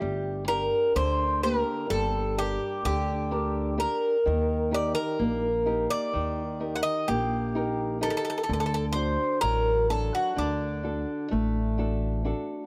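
Reflective and melancholic, this short excerpt of Greek folk music moves at 127 BPM counted in eighths, in a 9/8 metre with a straight feel, set in D phrygian dominant. A Greek bouzouki carries the melody between D4 and F#5, its picked double strings giving a warm, metallic edge, with some strings doubled at the octave. A dark, small-sounding nylon-string guitar fingerpicks the accompaniment, while a pizzicato upright bass on steel strings supplies a woody, thumpy low end between G1 and Eb2. The harmony moves from Gm to Eb at 4.3 seconds and settles on D at 8.5 seconds. All three acoustic instruments sit up front in the mix, wrapped in light reverb, and play together from the start until about 12 seconds.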